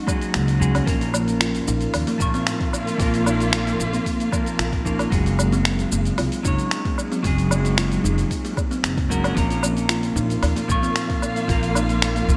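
A straight 4/4 groove at 113 BPM drives this meditative, earthy organic downtempo piece in Bb minor, where gritty sampler-style finger snaps, hi-hat, shaker and woodblock with gated reverb sit over a deep, layered electronic kick that drops out briefly from 0.3 to 0.9 seconds, a woody pizzicato upright bass anchors the low end, a buzzing kalimba spins delayed arpeggios, a twangy clean electric guitar comps with harmonic tremolo, delay and sidechain pumping beside bowed chamber strings holding pumping, vibrato-rich chords, a very quiet, pure quartz singing bowl rings from 0.9 seconds, and a deep udu returns in the background at 10.2 seconds, all framed by plate reverb and bright 1980s-style digital production.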